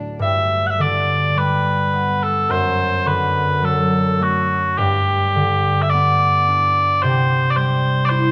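A moderate stage reverb gives this short cut from a longer Celtic slow air a gently spacious sound, with both parts sitting up front. A ringing, fingerpicked concert harp begins at 0.0 s, and at 0.2 s the sweet, continuous tone of mellow small bagpipes enters to carry the solo melody. Moving freely in rubato around 53 BPM in G major, it drifts through G, D/F#, G and C with a wistful, nostalgic air.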